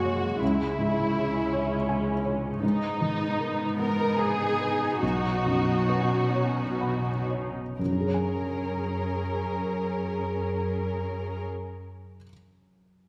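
Tender and uplifting, this emotional cinematic film score moves in 3/4 with a rubato feel, slowing down over its opening section. A felt-muted upright piano carries the accompaniment across a broad register, its mellow tone, short sustain and thick felt giving it an intimate quality. Muted string sections play con sordino: the violins take a lush, veiled second line up front with vibrato, the violas fill in the accompaniment with a smooth top and light vibrato, and the cellos anchor the bass with a dark, bowed sound. The harmony moves from C#m through G#madd9 and Badd9 before settling on F#add9 as a new section begins at 7.8 seconds. The strings stop at 11.4 seconds, leaving the soft piano alone until 13.1 seconds, and the music sits in a wet scoring-stage reverb.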